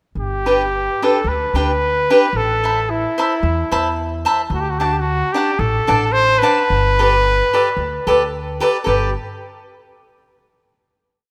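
A clear, classical-style solo trumpet and a woody pizzicato upright bass playing a two-feel of roots and fifths begin at 0.2 s, joined at 0.5 s by a bright, crisp picked cavaquinho chop-strumming open chord shapes up front, in a romantic, festive mariachi piece in G major at 111 BPM with a lightly swung feel, where the trumpet's motif-based melody moves in period phrases over G, Amadd9, D and Gadd9 before a final chord at 8.9 s, all in a lush hall reverb with a rough home-demo mix.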